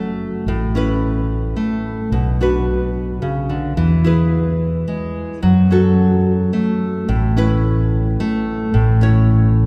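A nylon-string guitar opens this gentle, pastoral acoustic folk piece in A major, playing a full-bodied, fingerpicked classical accompaniment that sits up front. At 0.5 seconds a mellow fretless electric bass joins, its dark, round tone coming through direct and amped beneath the guitar. The music moves at 109 BPM in a straight 3/4 lilt, with a chord progression that travels from Aadd9 through Bm, E and F#m before returning to Aadd9 and settling on A. A lush church reverb with a long 3.7-second tail surrounds the playing, lending the feel of a church or concert hall. Cut from a longer piece, this short passage runs for just under ten seconds.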